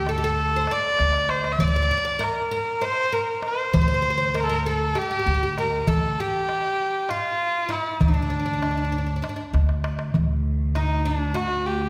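Heard in the reverberant bloom of a church or concert hall, this short passage cut from a longer piece is a passionate Turkish makam ensemble performance in D makam ussak, moving at 197 BPM in eighths through a straight 7/8. An up-front, nasal and earthy kamancheh carries the melody with light vibrato and portamento, ranging from D4 to a microtonally lowered E5, while a bright, woody fretless oud plucked with a plectrum traces a second line on its double strings. A growly pizzicato upright bass with steel strings anchors the low end on D2, and a small clay-shell darbuka with a natural skin, played with soft hands and sounding close and dry, keeps time and adds fills around 1.0 and 9.5 seconds. At 10.1 seconds the music shifts into a new section as a lush symphonic cello section enters with a smooth, even drone on D2, lending orchestral depth beneath the bowed kamancheh through the final moments.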